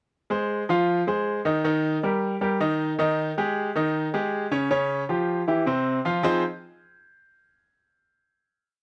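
Latin music in F minor at 157 BPM, driving and passionate, where a brilliant, woody upright piano plays a montuno in octaves alone and up front from 0.3 to 6.4 seconds, with long sustain, moving through Fm7, Eb, Ab5, Db and C before a final Fm7 chord at 6.2 seconds, all captured with close, detailed microphones and light reverb.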